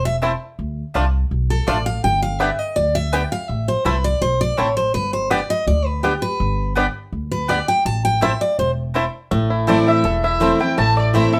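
Rustic and haunting, this A minor bluegrass excerpt at 165 BPM opens with a bright, full-bodied picked steel-string acoustic guitar soloing up front with audible finger squeak until 9.3 s, over a growly, thumpy pizzicato upright bass, twangy banjo arpeggios and mellow mandolin stabs moving through Am, Dm and G, before a bright mandolin melody and a biting bowed fiddle with light vibrato join at 9.7 s in a moderate studio reverb.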